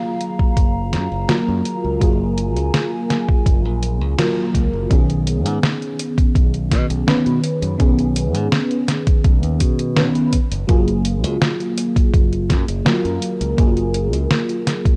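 Vaporwave at 83 BPM in a straight 4/4, this woozy, dreamy cut from a longer piece sits in F# major and drifts from an F#maj9 to a B69 at 4.9 seconds before returning to F#maj9. A mellow FM electric piano carries the accompaniment throughout, its round, full-bodied tone coloured by analog chorus and delay and a faint noise layer. A warbling, nostalgic pad of detuned, wave-folded tones holds sustained chords with a slow attack and its own reverb, ending at 4.9 seconds just after a brief band accent. Up front, a thumpy electronic kick and a detuned 8-bit drum machine supplying hi-hat and a medium-tuned snare both carry a vintage 12-bit sampler grit, while a bright fingered electric bass with transformer saturation anchors the low end. The whole mix has a dry, gritty, cassette-tape quality softened by light digital ambience.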